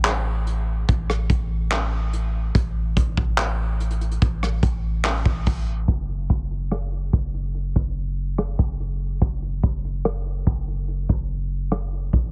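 A dry, heavily compressed, low-passed radio sound frames this moody, longing contemporary R&B fragment in F# minor at 72 BPM, where a deep, boomy 808-style sine bass with a noise layer, fast attack and decaying tail sits up front beside a soft brush kit of punchy kick, handclaps, hi-hat and rim click, dark and rolled off on top with vintage 12-bit sampler grit, the music shifting into a new section at 5.9 seconds.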